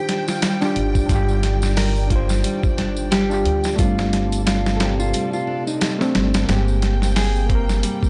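Smoky and hypnotic, this short trip hop excerpt sits on a lazy swung groove in 4/4, cut from a longer piece. A compressed, sampler-style drum kit stands up front with a thumpy kick, a medium-tuned snare and hi-hat, joined from 0.3 seconds by a close, dry tambourine in the background alongside egg shaker and group handclap. A woody pizzicato upright bass enters at 0.8 seconds and anchors the low end, while an overdriven, reedy electric piano played through a combo amp carries the accompaniment with harmonic tremolo and tape echo. Above it, a clean, fingered electric guitar with a dark tone plays the melody through tape echo, and a full-bodied nylon-string guitar fingerpicks arpeggios in the background, finger squeak audible. A lush, bowed studio string section holds sustained chords with vibrato and a smooth top as the harmony drifts from Ebmaj7/G to Bbmaj9/G and Abmaj9/G, each chord voiced over G. 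The small room and gritty hardware recording leave the sound dry and dusty, with the highs rolled off.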